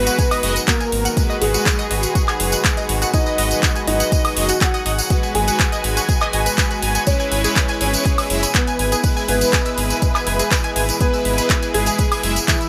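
A deep, tape-warm electronic kick sits up front at 122 BPM in straight 4/4 alongside a big-room dance kit of handclaps, metallic hi-hats and woodblock plus a jingly, saturated tambourine, driving this emotional progressive house excerpt in G# minor as the harmony moves from G#m7 to E at 7.1 seconds. A round analog bass with tube saturation anchors the low end, while a dark, intimate concert grand piano carries the melody through tape echo, shadowed by a distant, woody bowed violin section. Beneath them sit a tight, detuned sequenced arpeggio, soft supersaw stabs with phaser, a lush, airy chorused pad and a very quiet twinkling granular shimmer, with sidechain pumping breathing through the synths, strings, bass and hats under light reverb.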